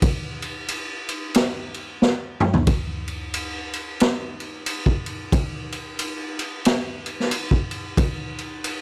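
A dry, close 1970s-style studio sound frames this brooding, hypnotic metal excerpt at 91 BPM in 4/4 with a swung eighth-note feel, where a raw garage drum kit, gritty and saturated with a boomy kick, medium-tuned snare, ride cymbal and toms, sits up front with a mid-forward, rolled-off top and breaks into a fill from 2.0 to 2.7 seconds.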